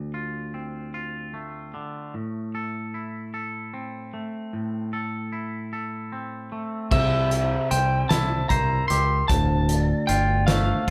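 In a lilting 6/8, this brooding, cathartic post-rock fragment opens with a clean, twangy electric guitar playing arpeggios alone over Dm7 and Am; at 6.9 s the band enters together as if live in one room, with a slightly broken-up, compressed lead guitar melody up front, soft-mallet vibraphone arpeggios ringing mellow in the background, a growling, overdriven fingered bass, and a loose indie drum kit with a fat snare, punchy kick and dark cymbals in a pumping room, moving through C and Dm7 until the cut at 10.9 s.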